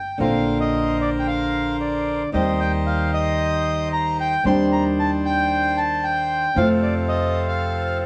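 Sultry and melancholic, this rubato tango in Bb major moves at 113 BPM, with an up-front bandoneon carrying a dark, airy melody from 0.0 seconds, joined at 0.2 seconds by a second, brighter bandoneon playing reedy stabs. A fingerpicked flamenco guitar, also up front and warm, adds audible finger squeak, while a woody pizzicato upright bass with steel strings anchors the progression from Bbadd9 through Eb6 and Cmadd9/Eb to F. The band plays live in one room with moderate studio reverb and a layer of vinyl crackle, in a short section cut from a longer piece.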